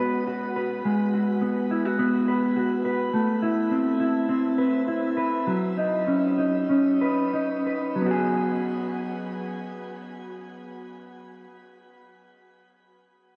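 Bathed in a wet shimmer reverb with a 6.2-second tail, this floating, blissful dream pop fragment of a longer piece features a single mellow electric guitar, dark, clean and fingered, placed up front with subtle chorus and delay, playing arpeggios from Eadd9 through Amadd9 and Badd9 to F#sus24 as the pace slows between 3.1 and 8.0 seconds.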